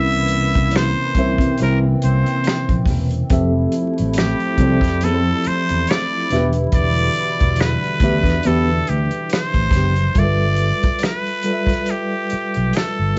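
A lazy 4/4 groove with swung sixteenths sets this sultry, smooth R&B and neo-soul passage, cut from a longer piece, at an unhurried pace. The up-front soul drum kit, a tight-booth sound with a fat snare, tight kick, pumping room and rolled-off top, mixes finger snaps and hi-hat with kick and snare, underpinned by a punchy, amped fingered electric bass that sits low and warm. Over a mellow, clean tine electric piano heard through its built-in speakers, a muted trumpet carries the melody up front in a jazz style: brilliant yet nasal, raspy and growling, with scooped notes and light vibrato. A thumb-plucked classical nylon-string guitar adds a second line from 1.2 s to 9.9 s, while a hollow, airy, flute-like pad with chorus holds slow-attack chords in the background until 10.1 s. The harmony moves from C7b9 through Fmaj7 and Em7 before settling on G13 at 10.2 s, and the whole band sounds as if playing live in one room, with moderate reverb, vinyl crackle and a dark, capped top end.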